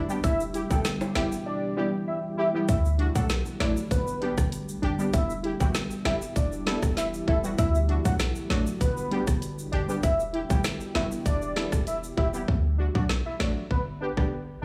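A deep, moody ambient pad and a clean, boomy 808-style bass open this tough, hypnotic dancehall track. The pad sits in the background with chorus, its own reverb and sidechain pumping on its sustained chords. Punchy, brassy synth stabs with a detuned sawtooth edge and chorus join almost at once, along with an egg shaker and timbales that have an acoustic, small-room character. A warm, velvety synth lead carries the melody through chorus, tremolo and digital delay. The electronic island pop drum kit sits up front in a straight 4/4 feel, with a tight kick, woody snare, dark hats and rim clicks, and drops out briefly between 1.5 and 2.7 seconds. The harmony cycles through a short three-chord progression. The pad, shaker and timbales stop at 12.5 seconds, leaving bass, stabs, lead and drums under light studio reverb for the closing moments of this cut from a longer piece.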